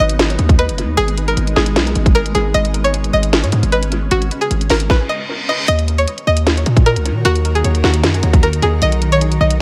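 At 153 BPM in a half-time 4/4 feel, a trap drum kit with a hard-clipped kick, sharp snare and warm hats sits up front beside a punchy, heavy 808-style bass, shaping an eerie, melancholic hip hop excerpt in Eb minor that moves from Abm to Ebm and then B. A bright, twangy string-like resonator pluck carries the melody through chorus and analog delay over a cloudy, blurred granular pad that holds sustained chords in its own reverb. A reverse cymbal sounds at 5.1 seconds, leading into the second section at 5.7 seconds, and at 7.2 seconds a fainter second pluck line with phaser appears in the background, all within an echo-heavy mix and light digital ambience.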